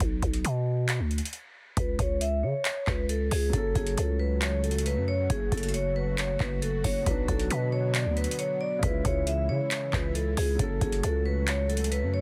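A growling, buzzy 808-style bass and an overdriven analog drum machine with a deep kick, metallic hats and handclaps open this brooding, menacing trap excerpt at 136 BPM in a half-time feel in F# minor, before a ringing, close-miked vibraphone melody with filtering and delay enters at 1.8 seconds, a dark, boxy grand piano sits in the background from 3.5 seconds, and a smooth, detuned sawtooth pad with chorus holds sustained chords from 4.0 seconds, all wrapped in a heavily compressed radio-like sound.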